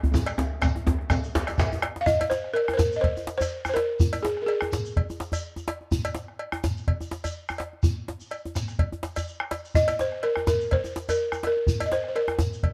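A driving, festive West African drum ensemble piece moves at 125 BPM in 4/4 with a light swing on the sixteenths, in a short section cut from a longer performance. It opens with a drum fill across the first 2 seconds, where a deep, soft-handed djembe sits up front before dropping out at 1.7 seconds, while a second, medium-tuned djembe with metal rattles carries on close and dry through the whole passage. A round bombo anchors the low end, a metallic cowbell sounds close and dry, and a grainy, mellow shekere sounds distant, as if from a larger room. A woody balafon played with soft rubber mallets brings a buzzing, full melody between Ab4 and F5, appearing from 2.0 to 5.4 seconds and returning at 9.8 seconds. Close, detailed microphones and light reverb keep the drums and balafon present and vivid.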